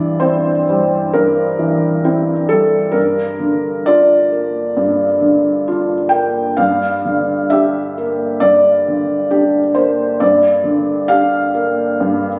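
Wistful and melancholic, this short fragment of neoclassical minimalist piano is cut from a longer piece and drifts in G dorian at 66 BPM in 4/4, played with a loose rubato feel. A lone felt-muted upright piano carries the whole passage from 0.0 to 12.4 s, ranging from G2 up to G5 and sitting up front with a soft, mellow, intimate tone. Its harmony moves from C7/G through Bb6/G to Gm7, all resting over a G in the bass. A slapback echo trails the piano, set inside a moderate recital-hall reverb with a 1.5-second decay and a further layer of club reverb. The sound has the compressed character of a phone recording made in the room.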